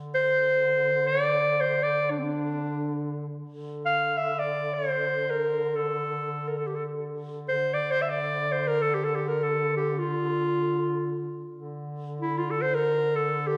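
A clear clarinet leads this hypnotic, melancholic Turkish makam piece, playing the melody in a classical style across a range of C4 to F5 and sitting up front in the mix. Beneath it, a dark duduk holds a low drone on D3, its vibrato and scooped notes giving it a folk character. The duduk sounds distant and roomy, set well behind the clarinet. The duduk begins at 0.0 seconds, and the clarinet joins at 0.1 seconds, with both sounding together until the close at 13.6 seconds. A wet recital hall reverb with a 1.8-second decay surrounds the pair, suggesting a church or concert hall, and the clip is cut from a longer performance.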